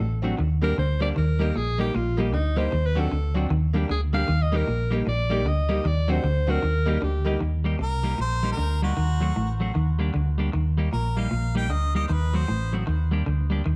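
An edgy alto saxophone with vibrato and plate reverb leads the first 7.4 seconds of this upbeat, bouncy ska excerpt in Eb major at 154 BPM with a swung feel, before a clear harmonica with scooped notes and dub echo takes over the melody from 7.8 seconds, above a round, up-front hollow-body bass, a semi-hollow guitar riff in the background, a twangy clean guitar with spring reverb, and jangly tack piano stabs with dub echo that play until 7.4 seconds, set in a dark, warm production with light reverb.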